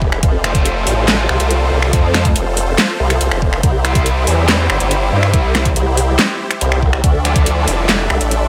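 Heavy wobble dubstep at 141 BPM in 4/4 with a half-time feel, this chaotic, weighty excerpt is cut from a longer piece and moves from F to C and then to Dmadd9 at 7.0 seconds. Up front, a formant-sweep wobble bass built from detuned pulse and sine waves growls through a formant filter with chorus and overdrive, compressed and sustained from the low register up to G2. A knocking, tape-warm electronic kick drives the groove until 7.4 seconds, joined by a layered dubstep kit of huge snare, metallic hi-hats, handclaps and finger snaps sitting prominently in the mix. In the background, lush detuned supersaw chords sustain with sidechain pumping, while a double-tracked fuzz guitar adds bright, picked, distorted stabs through a digital delay. Light reverb and digital ambience give the dense, aggressive mix a touch of space.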